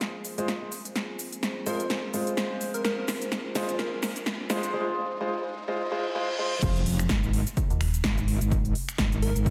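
A dreamy mix soaked in lush hall reverb opens this aggressive, bouncy bass house excerpt in F minor at 127 BPM with a 16th-note swing, where an overdriven big-room drum kit with a punchy snare, crisp hats, finger snaps and shaker builds over a deep, moody pad and intimate baby grand piano stabs carrying audible action noise, both pumping to the sidechain, while a catchy plucky unison lead with 12-bit sampler grit and delay sits in the background. A riser and reverse cymbal push toward the drop at 6.6 seconds, where an impact lands alongside a punchy overdriven kick and an up-front, saturated metallic wobble bass, joined briefly at 7.7 seconds by a digital FM bass hit.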